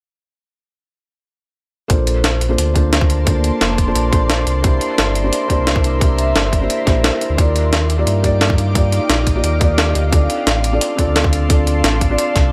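A straight 4/4 liquid drum and bass groove at 175 BPM in Bb major, uplifting and warm, drives this excerpt from 1.9 seconds as a tight, layered electronic kick and a gritty, pitched-up, tape-warm breakbeat kit with a medium-tuned snare sit up front over a deep sine sub bass, while a felt-muted upright piano with audible action noise and digital delay plays mellow accompaniment and an ethereal, detuned pad with chorus, phaser and sampler grit enters at 2.7 seconds with sustained chords moving through Bbmaj9, C9, Ebmaj9 and Dm7.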